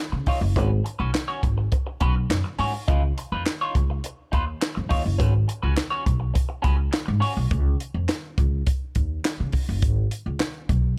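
A dry, close-sounding funk excerpt at 104 BPM in G# dorian, cool and sly in mood, built on a straight 4/4 groove over chords such as G#m7 and C#9. An up-front cocktail kit with a punchy kick, a high-tuned snare, hi-hat and handclaps sits beside a woody, pizzicato upright bass with steel strings. A picked, compressed electric guitar with wah, slightly broken-up and warm, plays accompaniment until 7.4 seconds, leaving bass and drums to carry the final stretch to 11.0 seconds.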